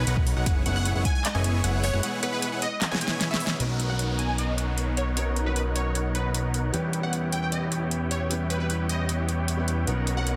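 A half-time groove drives this playful, euphoric future bass excerpt, with a punchy electronic kick up front only until 1.1 s and a tape-warm pop kit of fat snare, metallic hats and handclaps running throughout, including a drum fill into a band accent at 3.5 s. A fat, saturated analog bass and a huge, compressed supersaw riff pump under sidechain, while a bright, catchy plucky unison lead carries the melody through ensemble chorus and dub echo, joined early on by a lush unison pluck and a very quiet fingerpicked concert harp, both playing arpeggios. From 3.6 s a boxy baby grand piano with tape echo and a downlifter sit in the background, and from 5.2 s a shimmering, ethereal pad adds sustained chords as the harmony moves from Bmaj9 to Em6, the mix finished with light reverb and a dense, heavily limited master.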